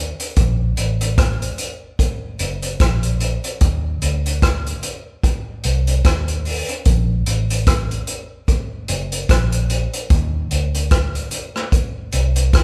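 A large studio reverb wraps this tender, romantic lovers rock reggae piece at 74 BPM, tuned to A4 = 435 Hz, where a dark, round, foam-muted vintage electric bass opens alone before an up-front vintage drum kit, with a tight kick, rim click, hi-hat and a rolled-off top in a pumping small room, joins at 0.2 s, the band playing live together over a swung sixteenth-note feel.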